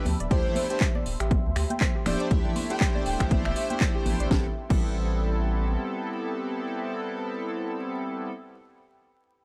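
A swung 4/4 groove at 120 BPM opens this smooth, moody deep house excerpt in A minor, driven by a punchy, overdriven electronic kick up front and a house kit of cracking snare, metallic hats, handclaps, finger snaps and crash, with bright hard-handed congas sitting in the background. Over a D7sus4 that moves to Am7 at 4.3 seconds, a round, deep analog bass and glossy, retro polysynth stabs with filter sweeps carry the harmony. Behind them drift a breathy, flute-like lead with vibrato, soft ring-modulated pluck arpeggios and a slow, detuned ambient pad, and the pluck and pad pump against the kick along with the bass and stabs. The drop runs from the start to 4.3 seconds. After that the congas, drums and pluck fall away by 4.8 seconds and the bass by 5.8 seconds, while the pad sustains to 7.9 seconds and the stabs carry on to 8.3 seconds. Everything is coloured by a dry, gritty hardware sound with vinyl crackle.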